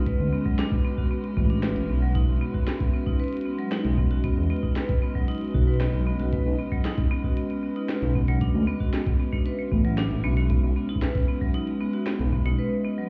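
IDM at 115 BPM in B major, a playful, intricate passage cut from a longer piece, where an icy, crystalline glass pad holds sustained chords with chorus and shimmer reverb while a ringing, metallic vibraphone struck with hard mallets spins arpeggios through delay and shimmer. Up front, a dark detuned saw bass rumbles and beats beneath a deep, tape-warm electronic kick, and a glitchy drum kit adds clicky hats, claves and a tiny snare through tape echo. The harmony moves through Dadd9, Badd9 and a rootless E, the whole mix sounding muffled as if heard through a wall and bathed in club reverb, before a brief break at 12.6 seconds where only the vibraphone rings on.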